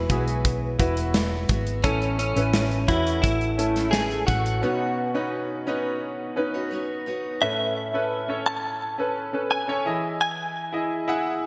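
Piano-driven pop with an uplifting, hopeful mood, cut from a longer piece, in which a clean, compressed electric guitar with ensemble chorus carries the melody over a clear, polished grand piano with analog chorus and a woody picked steel-string acoustic riff, while a round, dark hollow-body electric bass and an up-front drum kit with a tight kick and gated reverb drop out at 4.6 s for a break, the acoustic guitar stops at 7.4 s, and the bright 1980s-style digital production sits in a lush hall reverb.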